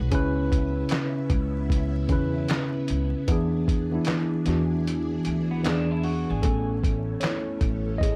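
Reflective and hazy, this lo-fi hip hop excerpt sets a worn, slightly out-of-tune tine electric piano up front over a swirling phased string machine, a woody pizzicato upright bass and a muffled, overdriven sampler-style drum kit with a thumpy kick, fat snare, hi-hat and handclaps, all under vinyl crackle, while the kick drops out from 4.9 to 6.4 seconds, a dark, slightly broken-up electric guitar with spring reverb and tape echo slips in briefly at 5.5 seconds, and the electric piano takes a solo over an A chord from 6.4 seconds.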